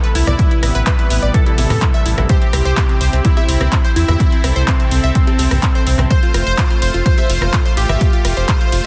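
A punchy, overdriven electronic kick, entering at 0.4 s, drives this straight 4/4 progressive house excerpt, joined by an overdriven deep house kit of handclaps, hi-hat, ride cymbal and rim click, with dry, ringing congas and bongos sitting in the background. A round, dark analog bass sits up front with tube saturation, while a lush, warbling unison pad holds chords from Amadd9 to C and F, and a bright, wave-folded analog pluck spins arpeggios through chorus and tape echo, all three pumping against the kick. Meanwhile, a smooth, evolving supersaw carries the bittersweet, expansive melody with tape echo, shadowed by a very quiet, crystalline wavetable pluck on a glassy second line, all within a dense, heavily limited master and digital ambience.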